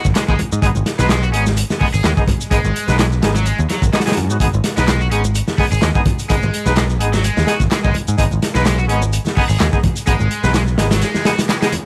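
A bright, overdriven electric guitar riff, double-tracked and trailed by delay, drives this swaggering, gritty breakbeat excerpt with its lightly swung feel. Alongside it sits a crunchy acoustic breakbeat kit, up front and saturated, with a tight kick, a medium-tuned snare and hi-hat, its dark, rolled-off top giving the groove a small-room weight. A punchy picked electric bass, direct and amped, anchors the low end. A clear, vintage horn section in octave doubling adds pop-style stabs with light vibrato and its own delay from 0.3 seconds. Layered electronic shaker and handclaps with a tape-tinged tone sit in the background, and very quiet, ringing congas, close and dry, join at 0.4 seconds. Vinyl crackle hangs over the sound, which carries little reverb, and the band hits an accent at 11.5 seconds just before the cut.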